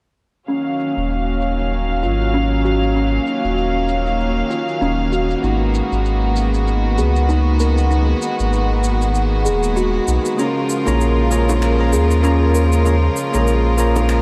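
A dreamy, reverb-soaked mix in a huge ambient space frames this wistful, relaxed sunset chillout excerpt in Eb minor, moving at 97 BPM in 4/4 with a swung sixteenth-note feel. A rich chamber string section sits up front with sustained, bowed chords, earthy and smooth on top with light vibrato, while a woody, hollow-box kalimba rings out thumbnail-plucked arpeggios through a low-pass filter and tape echo in the background. From 1.0 seconds a round, sine-like sub bass joins, deep and mellow, carrying a filter sweep throughout. Electronic shaker and finger snaps keep a soft, tape-warm pulse under a low-pass filter as the harmony moves from Ebm9 to Abm9 and then Bbm7. At 10.4 seconds a bright, barky tine electric piano enters with bell-like, clean accompaniment and tape echo, and tight, high-tuned bongos add very quiet acoustic color from 10.9 seconds.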